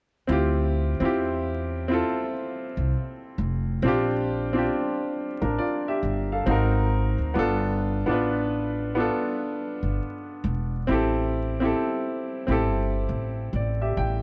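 Lo-fi hip hop in a reflective, melancholic mood, this excerpt moves at a swung 68 BPM in D minor, as a warm upright piano softened by a low-pass filter plays up-front accompaniment through Dm11, Bb6, G#9, G7 and Am7, while a dark, thumpy pizzicato upright bass with a woody gut-string tone sits equally close from 0.3 to 14.2 seconds, set in light studio reverb over a bed of vinyl crackle.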